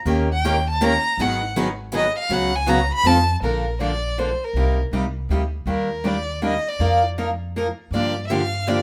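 A light reverb gives this short, lively cut of acoustic string swing (jazz manouche) an airy, close feel, with the violin, bass and first guitar sitting up front. It moves in a swung triple metre with a playful bounce. A rich, smooth bowed violin carries the melody with even vibrato, taking a featured solo turn in the opening passage before the music shifts into a new section at 3.4 seconds. Beneath it, a picked steel-string acoustic guitar with a crisp, concert-style tone plays accompaniment throughout. A second, boxier parlour-style guitar plays alongside it from the start, drops out at 3.2 seconds and returns at 7.9 seconds. A woody, thumpy pizzicato upright bass on gut strings anchors the low end, while the harmony moves through seventh chords such as D#7, Bbmaj7 and Gm7.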